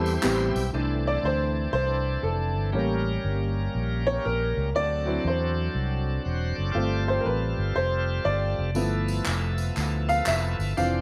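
Riding a swung eighth-note groove in four, this jubilant, soulful uptempo gospel passage, cut from a longer piece, sets a clear, woody upright piano with a vintage, short-sustain tone to take a solo from 0.7 seconds onward. A bright, shouting tonewheel organ holds sustained chords through a slow rotary speaker and light overdrive with audible key click, while a dark, round, punchy fingered electric bass sits up front. Distant tambourine and group handclaps appear at the very start and return from 8.8 seconds, all in a small room with light reverb as the harmony moves from major-seventh colour through an altered dominant to a suspended and then a thirteenth chord.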